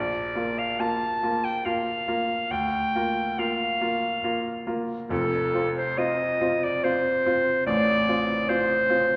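Lyrical and serene, this romantic classical duo for clarinet and grand piano moves in an unhurried 3/4 at 67-75 BPM with a flexible rubato feel, settling in Bb major as its harmony moves between Bb and F chords. The bright, vintage-toned clarinet carries the melody up front with a soft attack, while the brilliant, intimate grand piano supplies accompaniment in its lower and middle range, its short sustain and audible action noise close at hand. A wet recital hall reverb places the pair a little further back in the room, and the 9.2-second passage is cut from a longer piece.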